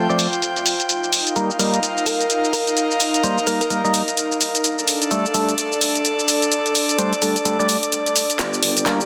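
Gritty and aggressive, this bass house cut with a swung sixteenth feel sets hollow, wave-folded organ stabs carrying tape echo against a breathy, detuned pad up front, over tape-warm, layered garage drums of handclaps, hi-hat and shaker, while a round, tine-like pluck drifts in the background from 2.1 to 3.7 seconds and a nasal, saturated wobble bass arrives at 8.4 seconds under a drum fill, in a dense, heavily limited mix with moderate plate reverb.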